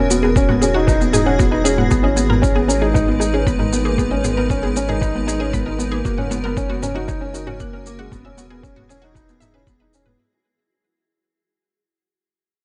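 A felt-muted upright piano riff sits up front from the very start, soft and intimate with audible action noise and delay, over a cloudy granular pad, a lush, detuned unison pluck playing delayed arpeggios and a round, deep analog bass, with the pad, pluck and bass all pumping with sidechain in this hypnotic, moving piano and strings electronica at 116 BPM in 4/4. An electronic shaker and toms with a tape-warm, small-room character join at 0.1 s, and a compressed, thumpy, pitched-down kick arrives at 0.4 s, as the chords move from Eadd9 through G#madd9 and F# back to Eadd9. Cut from a longer piece, this drop passage fades out from 1.9 s under light reverb.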